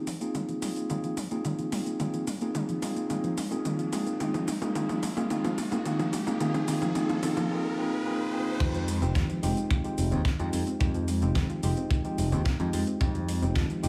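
Straight 4/4 nu-disco, groovy and sleek, builds from the start as a produced house drum kit with cracking snare and metallic hats runs a fill, a tremolo-laden tine electric piano through a combo amp plays alongside warbling, detuned analog pluck arpeggios with chorus and cassette-tape character that ride a filter sweep, and an electronic riser enters at 2.4 s, until the drop at 8.6 s brings in a tight, up-front kick drum and a bright, punchy picked electric bass with tube saturation, the piano, pluck and bass all sidechain-pumping inside a moderate plate reverb.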